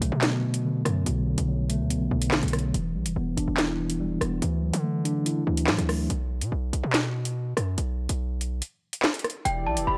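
Dark and tense, this half-time drill excerpt pairs a mellow, clean tine electric piano, filtered and heard through built-in speakers, with a punchy, heavy 808-style bass and a drill kit of sharp snare, metallic hi-hats, rim clicks and handclaps. The piano drops out at 6.1 seconds for a break in which the kick falls silent from 8.6 seconds, before a delicate, bell-like and slightly out-of-tune celesta and a smooth, detuned analog pad with chorus and phaser arrive at 9.5 seconds, in a dry, gritty cassette-tape recording with light reverb.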